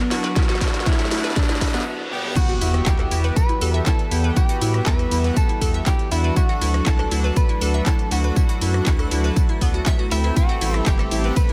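This progressive house excerpt opens on a short build-up in E minor at 120 BPM, where a clean, bright electric guitar melody with vintage sampler grit and delay rides over a lush, airy unison pad on a Bm chord, while a pop drum kit fill and a very quiet riser and reverse cymbal gather tension. At 0.1 seconds a round, deep analog bass with a mellow, wave-folded character, a glassy wavetable pluck playing arpeggios in the background, and soft supersaw stabs with delay enter, and a punchy, up-front electronic kick follows at 0.4 seconds. After a brief break, the drop lands at 2.4 seconds with an impact. A second, very quiet crystalline pluck line and a gritty breakbeat sampler-style kit with a high-tuned snare and tambourine come in at the same moment. From 4.0 seconds a reversed, dreamy swelling texture adds a faint granular shimmer up high as the chords move through Emadd9, D and Am7. Sidechain pumping on the bass, pad, arpeggiated pluck, supersaw and guitar gives the driving, emotional track its breathing push, set in a digital ambience with the kick and fat-snared kit sitting in a small room.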